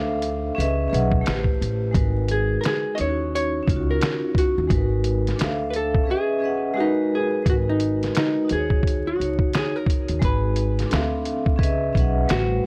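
A dark, clean hollow-body jazz guitar carries the melody from 2.3 s in this hazy, reflective lo-fi hip hop excerpt in G# minor at 87 BPM with a swung 4/4 feel, over an airy, ringing vibraphone with slow motor vibrato and cassette-tape color, a woody pizzicato upright bass, and a muffled, pitched-down sampler-style drum kit of thumpy kick, fat snare, hi-hat and finger snaps that falls silent from 6.1 to 7.5 s, all set in a gritty, dry recording with vinyl crackle and studio reverb.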